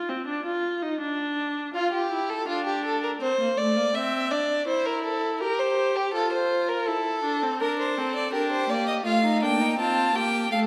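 A solo viola opens this excerpt from a longer baroque-style fugue for string quartet, its focused, bowed line with vibrato sitting up front in the accompaniment role. At 1.7 seconds a smooth, rich violin enters above it as a second line, and at 7.6 seconds a clear, close violin joins with the melody in the highest register. The mood is joyful and elegant, moving at a moderate 82 BPM in a straight 4/4. Under the entries the harmony runs through F, C, C7/E, F, Bb and F/A. Each of the three parts is a single player, and a recital hall reverb with a 1.5-second decay gives the strings a live, resonant setting.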